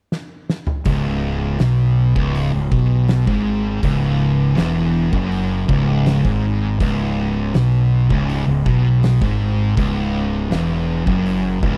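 A dry, close 1970s-style studio sound frames this brooding, sludgy stoner and doom metal fragment at 81 BPM in C# minor, where an oversized low-tuned drum kit with a fat snare and punchy kick opens with a fill before a distorted, double-tracked fuzz guitar riff sits up front at 0.9 seconds over a growly, overdriven fingered bass on a C# minor chord.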